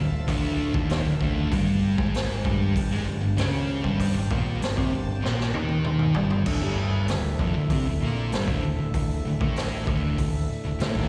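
A straight 4/4 groove drives this sludgy, hypnotic stretch of stoner and doom metal, cut from a longer piece and heard as a live gig through the venue's PA with a hint of hall reverb and faint mains hum. Two thick fuzz guitars grind out the riff, one dark and out front, the other warm, set back and carrying a slapback echo, over a growling, overdriven bass with tube saturation. An overdriven tonewheel organ with key click and slow rotary speaker holds gritty chords in the background, while a raw garage drum kit with a boomy kick and rolled-off top enters at 0.3 seconds and plays a fill from 5.2 to 6.5 seconds into the next section.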